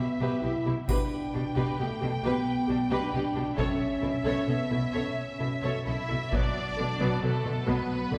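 Heroic and relentless, this cinematic orchestral cue in B minor moves at 133 BPM in 3/4, with lush, vibrato-rich violins carrying the melody over a second violin line, smooth violas, a mellow French horn section holding sustained chords, a rich cello section sitting in the background, and a double bass section anchoring the low end, while a taiko ensemble with hard sticks drives from 0.9 to 7.2 seconds, a bright, dry triangle sounds briefly from 0.9 to 1.7 seconds, and a wet scoring-stage reverb places the orchestra further back in the room.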